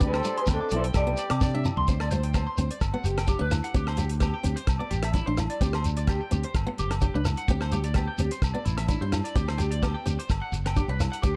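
A sunny highlife guitar-band excerpt opens with a slightly broken-up electric guitar melody through analog delay, joined in the background by a clear, vintage flugelhorn until 1.6 seconds, as a drum fill leads into the main groove, while a bright picked steel-string acoustic guitar, a twangy phased electric guitar playing arpeggios, a punchy fingered bass, and a dry, damped drum kit with a fat snare and tight kick carry on alongside a grainy shekere and ringing agogo bells in a small room.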